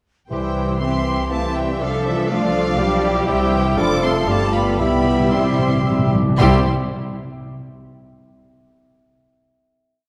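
A lively, cheerful classical-period movement for symphony orchestra in C major, moving in a quick 3/4 at roughly 112-124 BPM. From 0.3 s the violins carry a smooth, vibrato-rich melody over violas, double basses and a warm horn section doubling the tune at the octave. Meanwhile clarinet, a dark cor anglais and bassoon fill out chords in the tune's rhythm, hollow-toned flutes double the tune in thirds and at the octave, and inner violins weave independent lines. A very quiet, expressive cello counter-melody joins at 0.8 s. Soft-mallet timpani mark the bass notes and return for a round fill from 4.8 s before the final C chord, all set in a dark production with a lingering concert-hall reverb.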